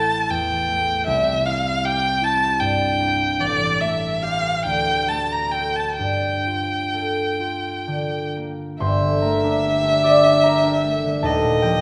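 Mysterious and hazy, this fragment of a longer impressionist classical duo drifts in a rubato 6/8, with a single bowed violin carrying the melody in a rich, focused voice shaded by vibrato. A concert harp accompanies from the outset, its fingerpicked strings ringing with a warm acoustic glow beneath the violin as the harmony moves through colors like Am7, Gm11 and a closing Eb69. Both instruments sit up front in a wet scoring stage reverb, and the tune moves into a new section at 8.8 seconds before the fragment ends at 11.8 seconds.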